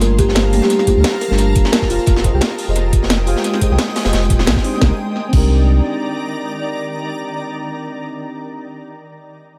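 A swung liquid drum and bass groove opens in the drop, with a knocking electronic kick entering at 0.2 s beneath a cracking snare, metallic hats and crash from a tape-echoed drum and bass kit, while a gritty, saturated breakbeat kit with a rolled-off top sits in the background. A round, deep sine sub bass sits up front, a dark, full-bodied FM electric piano with chorus and analog delay carries the accompaniment, and a bright, ethereal pad with octave-up shimmer holds sustained chords across Gm9, Fm9 and Cm9. A woody, hollow kalimba with dub echo plays the melody until 2.1 s. The breakbeat kit drops out at 4.6 s and the other drums stop at 5.4 s, leaving the sub bass to fade by 5.8 s beneath the dreamy, soulful keys and pad ringing in an echo-heavy small room.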